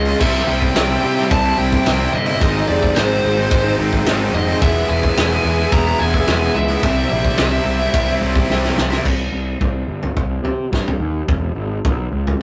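Quiet-loud alternative rock at 109 BPM in a restless, cathartic mood, cut from a longer piece: a dark fuzz lead guitar carries the melody until 8.2 s over riffs from a bright distorted electric guitar, a heavy high-gain guitar and a very quiet, double-tracked sludgy guitar, while a punchy, up-front fuzz bass and a loose indie drum kit with a fat snare drive the groove, until a drum fill at 8.5 s leads into a new section at 9.0 s where the remaining guitars and a barely audible, lush bowed string section drop out, leaving bass and drums in a rough rehearsal-room sound with tube saturation.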